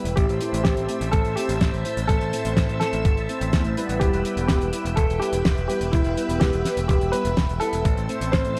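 A lush string machine with phaser and ensemble chorus holds sustained chords from the start, while mellow, detuned synth brass with chorus plays stabs beneath it in this melodramatic, nostalgic italo disco fragment at 125 BPM in straight 4/4. A bright picked electric bass and a thumpy, sampler-style electronic kick drive the groove alongside the hi-hat and fat snare of a dry, damped 70s kit, both drum parts set in studio reverb. From 0.2 seconds a grand piano carries the melody through tape echo over a move from A minor to E minor and back, in a lightly reverberant studio space.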